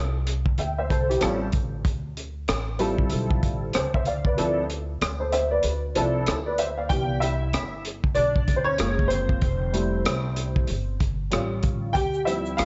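Cool and nocturnal, this jazz-hop fragment, cut from a longer piece, rests on a swung hip hop groove. A thumpy pizzicato upright bass with gut strings opens the track, and a crunchy breakbeat kit soon follows with hi-hat, rim click and a punchy kick, given a rolled-off top and vintage 12-bit sampler grit. A worn, slightly detuned upright piano sits up front with an ensemble chorus, moving through lush extended and altered chords such as Fmaj9, A7alt and Dm11. The kick drops out from 4.4 to 6.9 seconds, and from 6.9 seconds the piano takes a solo over the repeated section. A bright tube shaker played with soft hands slips in faintly in the background at 11.9 seconds. A plate reverb and small-room ambience soak the mix in a dreamy, dark haze with the highest frequencies trimmed away.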